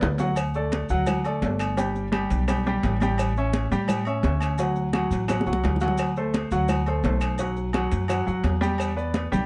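Salsa at a brisk 171 BPM in straight 4/4, this short, joyful and festive cut from a longer piece moves through D, G and A7 before turning to D7, B5 and Em7. Up front, a clear, intimate grand piano carries the accompaniment with audible action noise, while a thumpy, gut-strung upright bass plays pizzicato in a dark, woody low register. Around them sits a dense percussion bed: high-tuned, damped congas with a bright, thin skin and soft hands, tight bongos and cowbell struck with hard hands, and ringing metal-shell timbales with agogo bells that sound compressed and saturated. Grainy, mellow maracas stay close and dry in the background, and woody claves enter at 0.4 s with a live-room sound. Drum fills open the track and return at 5.3 s, all set in moderate studio reverb within a dark production.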